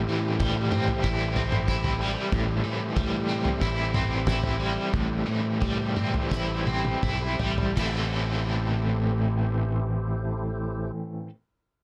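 This short psychedelic rock fragment, cut from a longer piece, opens on an Am7 chord in A minor, with a crunchy, bright overdriven guitar riff out front, a round fingered electric bass underneath, and a percussive tonewheel organ holding sustained chords in the background. The guitar is picked and double-tracked, with a tremolo effect colouring its riff. The organ carries key click, lightly overdriven grit and chorus vibrato, turning through a slow rotary speaker. At 0.4 seconds a damped 70s drum kit comes in, dry and smooth, with a fat snare, tight kick, toms and dark crash cymbals. The straight 4/4 groove sits between 80 and 94 BPM and gradually slows, and a drum fill leads into a new section at 7.8 seconds, where the drums fall away. A light reverb surrounds the band, and the mood is shadowy and mysterious.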